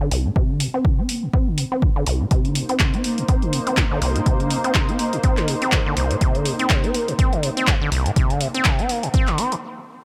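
A squelchy, resonant sawtooth acid bass riff with overdrive, digital delay and sidechain pumping leads this trippy, playful acid house excerpt at 123 BPM with a swung 16th feel over Cm7, its filter sweeping throughout, while an up-front, punchy electronic kick and a tape-warm analog drum machine with handclaps and hi-hat keep time, a lush, detuned unison pad with chorus and phaser enters at 2.3 s, and light reverb holds it all until a stop at 9.6 s.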